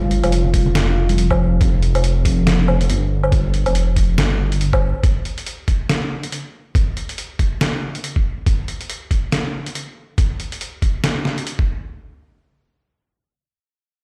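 A half-time groove at 140 BPM in 4/4 swings its sixteenths, driven by a thumpy, pitched-down electronic kick that sits up front and runs to 11.7 seconds, with a gritty sampler-style trip hop kit of hi-hat, medium-tuned snare and woodblock. This is deep dubstep with a heavy, cavernous mood, tuned slightly low and cut from a longer piece. A dark detuned saw bass rumbles deep and beating on a sustained Fsus2 chord, while a moody analog pad holds that chord in the background with slow attack, a moving notch and chorus; the bass stops at 4.9 seconds and the pad at 5.1 seconds. Soft-handed congas, bright and acoustic, flicker in the background through a dub echo until 1.2 seconds. The compressed drums carry the grit of being re-recorded in a large room, and the whole track is washed in large studio reverb and digital ambience, as if played on a big sound system in a bare room.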